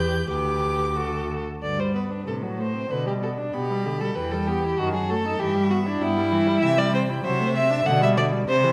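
The second violin stands out most, sitting up front with an expressive, vibrato-laden tone, soft attacks and graceful portamento as it carries a second line beneath the melody. This quick, cheerful classical-period movement for string quartet moves at 96 BPM in 2/4 and G major, with a spirited yet rubato feel. Above it, the first violin sings the melody high in its range with a rich, close, evenly bowed sound, while the viola adds a clear, focused accompaniment and the cello anchors the bass with a smooth, vibrato-coloured line. All four players bow throughout the 8.7-second excerpt, cut from a longer piece, and a new passage begins at 1.6 s, moving through harmonies such as E minor, C and D7 before settling on G over B. A generous recital hall reverb with a 1.5-second decay surrounds the ensemble.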